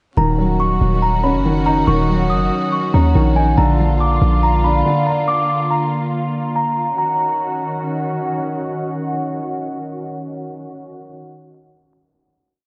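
Menacing and ominous, this short half-time drill piece in Eb minor at 141 BPM opens on a filtered breakdown where a bell-like, delicate celesta loops a sweet delayed melody over a dark grand piano's pedal-note arpeggio in eighths, sul tasto studio strings holding a soft, lightly vibrato pad, and a punchy, heavy 808-style bass sliding through long sub-bass notes until 4.8 s, all set in a dreamy hall-reverb mix with vinyl crackle before the strings, joined by the celesta until 8.2 s, sustain the final Ebm7 chord from 7.0 s.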